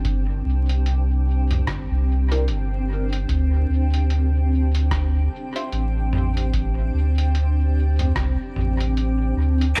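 Ambient dub at 74 BPM in 4/4, with a loose 16th-note swing and a deep, hazy mood, heard in a short section cut from a longer piece. A round sine sub bass sits up front, holding deep sustained notes, while a granular cloud pad drifts behind it in blurred, evolving chords with a slow attack, long release and its own built-in reverb. An analog electronic kick stays in the background, joined by a sampler-style kit of hi-hat, rim click and toms that sounds pitched down, muffled and tape-warm, as if re-recorded in a small room, its hits trailing dub echo. From 2.3 to 5.7 seconds a nasal, resonant sawtooth chord stab appears in the background, plucked through a filter and colored by phaser and dub echo. The harmony moves from C5 to D7(no3) at 3.3 seconds, and a layer of vinyl crackle runs over a dry mix.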